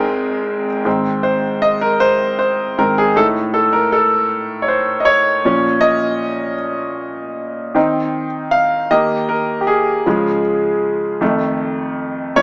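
A clear grand piano carries this short gospel passage alone, its intimate, natural tone sitting up front with its action noise audible beneath the notes. The mood is uplifting and hopeful, moving at a slow 52 beats per minute in a straight 6/8 in Ab major, and the piano spans from deep bass notes up into its upper register. After an opening Abmaj9, the piano plays solo from 0.9 seconds, moving through a diminished chord and Bbm before reaching Cmadd11/Eb, Eb and Db. The passage closes on F7 at 11.2 seconds, leaving the phrase open as the cut ends at 12.4 seconds. Light reverb surrounds the piano, and the recording has the compact quality of a small speaker.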